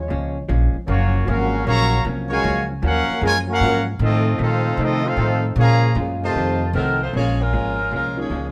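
The warm trumpet section carries the melody up front, its vibrato and soft attack riding over a brassy, dramatic big band swing passage in Bb minor at 154 BPM, cut from a longer piece. Beneath it, a clear, close-miked trombone section holds sustained chords from the start while a second trombone line runs alongside the trumpets, and a woody pizzicato upright bass with steel strings sits up front throughout. A dark, clean, compressed hollow-body electric guitar picks its accompaniment in the background as the harmony moves from Bbm7 through Gbmaj7 and F7. At 6.8 s a mellow, roomy saxophone section takes over the melody, and at 7.1 s an intimate concert grand piano with audible action noise and deep bass joins quietly behind it. A moderate small-room reverb gives the ensemble a compact, natural space.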